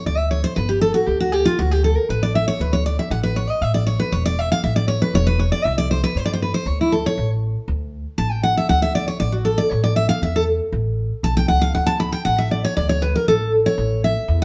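A picked steel-string acoustic guitar, full-bodied and up front with audible finger squeak, takes a solo across this lively, joyful bluegrass excerpt in D major at 236 BPM, backed by a woody, dark pizzicato upright bass, with the band playing live in one large studio room with moderate reverb.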